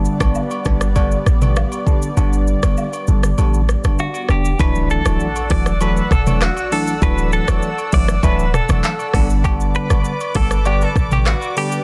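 Dense, heavily limited and bathed in digital ambience, this romantic, breezy afrobeats excerpt at 99 BPM in D major rides a deep, boomy 808-style bass and an up-front electronic drum kit with metallic hats, handclaps, rim clicks, shaker, toms and a softly clipped snare, whose kick drops out from 2.2 to 4.6 seconds, while a bell-like tine electric piano with phaser and a thick, detuned sawtooth pad with chorus carry the G and Dadd9 chords, agogo bells and woodblock sit in the background, a twangy, direct-recorded electric guitar picks the melody from 4.0 seconds through harmonic tremolo and tape echo, and a very quiet electronic impact appears shortly after.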